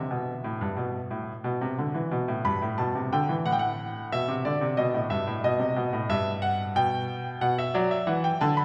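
A lone E5 from a bright, up-front concert grand piano opens this short, contemplative baroque-style two-part invention in E minor at 90 BPM in straight 4/4, and from 2.1 seconds the solo piano, spanning deep bass notes to high treble, moves seriously through E minor, D, B7 and E minor chords to B minor, its sound bathed in a long church reverb before the excerpt is cut off at 8.6 seconds.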